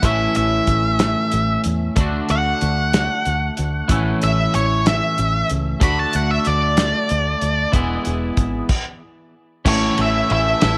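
Light reverb and small-room ambience frame this carefree, jangly indie rock fragment in 6/8, cut from a longer piece. A dark, octave-fuzz lead guitar sits up front and carries a solo melody over a chord cycle of A, D and E, while a twangy, clean electric guitar plays a phaser-tinted riff and a compressed twelve-string electric guitar adds its own picked riff with subtle chorus and tape echo. Underneath, a round, punchy fingered bass with a foam-muted tone anchors the low end, and a cloth-damped, thuddy acoustic kit with dark cymbals, a tight kick and a rolled-off top sits close and forward. A stop breaks the flow between 8.7 and 9.7 seconds. At 9.7 seconds the solo gives way to a new section, where a very quiet, mellow tine electric piano slips in with a soft second line through its built-in speakers.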